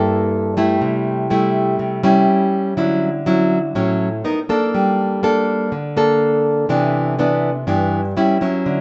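A solo nylon-string guitar, fingerpicked and placed up front, carries this short bossa nova fragment cut from a longer piece, its fresh strings giving a bright, classical tone with audible finger squeak. The mood is relaxed and sophisticated, moving at 122 BPM in a straight 4/4 in D major, with the tuning set slightly low at A4 = 439 Hz. The guitar spans G2 to Bb4, opening on C6 and passing through C#dim/G before a new section arrives at 2.8 seconds on Dmaj9. From there the harmony drifts through Bbmaj7, Gmadd9 and Cmaj9, settling on Em69 at 8.2 seconds. A moderate plate reverb with a long 3.3-second tail surrounds the playing, and the top end stops at 7.9 kHz.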